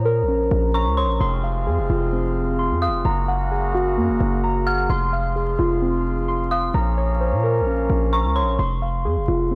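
A heavy, distorted 808-style bass sits up front in this brooding, melancholic half-time hip hop piece, beneath muted, felt-like synth keys playing arpeggios through chorus and tape echo, while an eerie, inharmonic detuned synth bell carries a second line from 0.7 s and a reedy, breathing harmonium holds sustained chords from 1.2 s, in a dry, gritty recording laced with transformer saturation and vinyl crackle.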